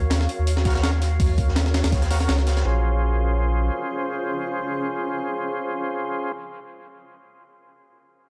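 Drum and bass with a jungle lean, this brief, atmospheric and raw fragment opens on a blurred, evolving granular pad carrying Ebm9 into Bbm9, its built-in reverb and 12-bit sampler grit set against an otherwise dry, gritty hardware sound. A round, deep sub bass sits up front until 3.7 s, while a thumpy, compressed sampler-style breakbeat kit with a high-tuned snare runs up to 2.6 s, shadowed in the background by a darker, saturated second break with a rolled-off top. From 0.7 s a smooth tonewheel organ adds stabs through chorus vibrato, a low-pass filter and dub echo, lingering with the pad to the end.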